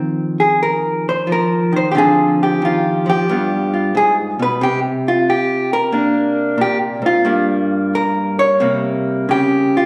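A dark, clean, up-front vintage hollow-body jazz guitar plays alone through this swinging, warm solo jazz excerpt, its picked, compressed tone drifting with rubato over a lilting swing feel in a wet recital hall reverb as the harmony moves from Ebsus2 through G7b9 and Gm7b5 to settle on C5 near 8.6 seconds.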